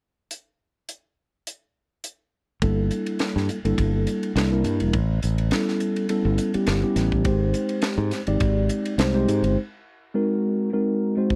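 A bright, punchy fingered electric bass sits up front in this driving, intense slice of electric jazz fusion at 104 BPM in 4/4 with a light sixteenth-note swing, entering at 2.6 seconds alongside a mellow tine electric piano colored by analog chorus. Before that, a tight funk drum kit with a high-tuned snare, tight kick, hi-hat and ride plays alone. The piano moves through Gm69, A9 and Abmaj7 before the bass drops out for a break over Ab9 at 9.6 seconds, all captured in a dry, close 1970s-style studio sound.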